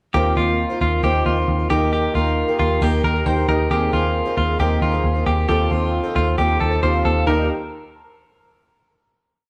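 A round, foam-muted electric bass drives this short, nostalgic and youthful indie pop piece in eighth notes, joined up front by a bright, twangy clean electric guitar ringing out picked arpeggios through spring reverb. A boxy, shimmering twelve-string acoustic guitar strums octave-doubled barre chords with a touch of finger squeak, while glossy, chorused retro synth keys hold close-voiced chords with tremolo and add fills at 2.8 and 6.4 seconds. The band plays live together in a large studio room through a pre-chorus that lands on a final Eb chord at 7.3 seconds.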